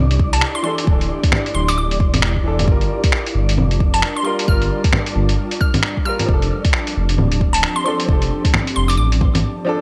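A bright, woody upright piano with delay, an ethereal pad and a rumbling, detuned saw bass open this nocturnal, melancholic future garage excerpt at 133 BPM, all pumping to the sidechain, while a breathy, wind-like noise texture sits in the background. A muffled, pitched-down sampler kit of bongos, finger snaps and hi-hat joins with a deep, layered electronic kick, and a crystalline wavetable pluck with chorus and tape echo carries the melody high over swung 16ths and the chords Dsus2, Gm7 and F6. By 9.4 seconds the other parts have stopped for a short break, leaving the piano alone until 9.8 seconds.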